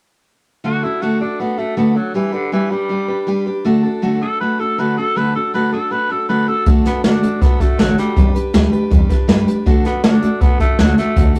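Upbeat and retro, this rockabilly excerpt moves at a brisk 160 BPM in D major, with a full-bodied picked steel-string acoustic guitar up front laying down the D and G chords while a raspy, gritty tenor saxophone carries the melody from the start. At 6.7 seconds an upright bass, woody and thumpy with pizzicato gut strings, joins in the background, alongside a brushed jazz drum kit with a boomy kick and medium-tuned snare placed prominently in the mix. Light reverb and a rough rehearsal-room sound give it a vintage, live-in-the-room character.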